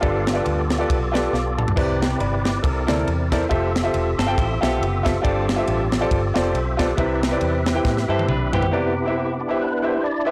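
A swung 138 BPM groove in 4/4 drives this jubilant, soulful uptempo gospel excerpt in C major, anchored by a crisp, airy fusion drum kit with a high-tuned snare and tight kick up front, with fills at 1.3 and 7.9 seconds, alongside a dark, round, foam-muted electric bass. An intimate grand piano with audible action noise carries the rich extended chords while a fat tonewheel organ with key click, slow rotary speaker and chorus vibrato sustains beneath, then takes a short solo from 8.7 seconds after the drums and bass stop; a twangy, picked clean electric guitar adds brief second lines. The whole recording is blown-out and overdriven, with light reverb.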